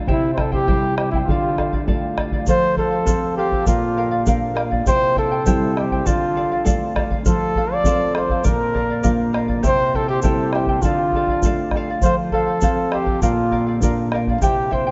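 In a straight 2/4 at 100 BPM, this wistful, earthy Andean folk excerpt sets a veiled, bucket-muted trumpet melody with light vibrato up front over fingerpicked, shimmering charango, full-bodied, thumb-plucked nylon-string guitar and a deep bombo, with a grainy egg shaker entering at 2.5 seconds, all cycling through C, Dm, F and Bb in a vast, echoing cathedral space.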